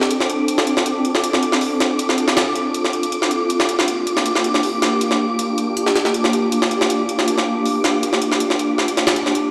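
A straight jungle beat from a gritty, pitched-up sampler-style kit, its compressed, high-tuned snare and hi-hats filtered thin and set up front, carries this nostalgic, raw drum and bass fragment, cut from a longer piece. An ethereal, full-bodied pad of detuned, wave-folded unison voices holds mellow chords from Dm7 to Gm7 at 3.1 s, thickened by ensemble chorus, while a faint, breathy wind-like noise texture floats high above. The whole mix sits in a lush hall reverb with vinyl crackle, as if played on a big sound system in a bare room.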